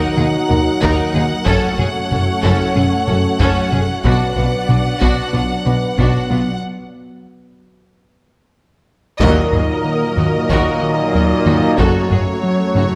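A moderate scoring-stage reverb gives this brooding, vast cue a spacious sheen, a fragment of a hybrid orchestral and electronic film score moving at 93 BPM in a straight 4/4 through Ebm, Gbm and Bm harmony. A smooth, vibrato-rich violin section carries the melody, while a second violin line, a clear and distant viola section, a very quiet, soft-attacked cello section and an equally quiet double bass section fill in the lush bowed body beneath it. Sustained chords come from a dark, roomy French horn section and a silky, detuned analog string pad with ensemble chorus, all sitting in the background. A harp-like synth pluck rings out arpeggios through chorus and digital delay, and a rubbery, hollow square bass bounces through a riff alongside a heavy-sticked taiko ensemble. The harmony drops away into a break at 6.6 seconds, the taiko drums play a fill from 8.2 seconds, and at 9.2 seconds the full band hits an accent as a bright, tight trombone section joins with sustained chords.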